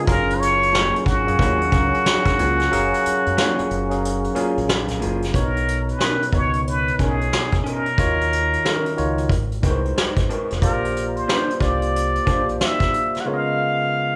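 Warm and sensual, this neo-soul R&B excerpt moves at 91 BPM with a swung 16th-note feel in F# major, led by a breathy, whispered trumpet with plunger mute carrying the melody over a clean tine electric piano, while a mellow, very quiet trombone section adds distant stabs until 5.0 seconds. A round, dark fingered electric bass and an up-front vintage brush kit with a punchy kick and rolled-off top anchor the groove, and a lo-fi, slightly broken-up electric guitar with spring reverb sits in the background as a second line. The band plays live in one large studio room, with a break from 2.7 to 5.3 seconds, chords moving from F#maj9 through Bmaj9 and G#9 to a closing C#13, and the drums dropping out at 13.3 seconds.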